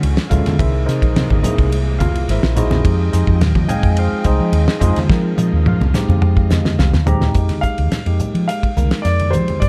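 A woody fretless electric bass sits at the front of this intense, funky electric jazz fusion excerpt, its round, hollow-bodied tone thickened by an analog chorus. Underneath it, a damped 70s drum kit plays a straight 4/4 at 106 BPM, with a fat snare, tight kick and rolled-off top close up in the mix, while low-tuned congas with a thin, bright skin sit further back in a live room. A tine electric piano in lush chorus supplies clean, direct accompaniment over chords moving from Dmaj9#11 through C7alt to Fm11, and a focused, bowed studio string section holds sustained chords with vibrato in the background until 7.3 seconds. The drums play a fill from 5.1 seconds, and the electric piano adds a fill of its own shortly after. A clear grand piano then enters with a melody at 7.6 seconds. The production is dark and warm, with light reverb.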